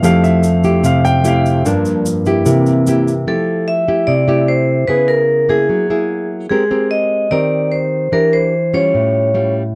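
A breezy, sunny bossa nova fragment opens with a natural, deep-toned concert grand piano soloing up front over dark, fingerpicked classical nylon-string guitar with audible finger squeak and a grainy, bright egg shaker. At 3.3 seconds the piano and shaker drop out, and a metallic, ringing vibraphone played with medium hard mallets and motor off carries the melody beside the guitar through shifting extended chords, all in a dry, close 1970s-style studio sound with light reverb.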